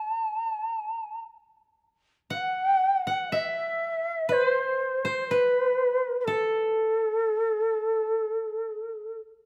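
Still and solitary, this brief excerpt of Japanese traditional chamber music drifts in free rubato at roughly 55-63 BPM in the A kumoi scale, with an up-front, breathy bamboo shakuhachi carrying the melody, its tongued chiff and vibrato adding detail, while a dry, woody koto played with fingerpicks lays a quieter second line beneath, all captured by close, detailed microphones in light reverb.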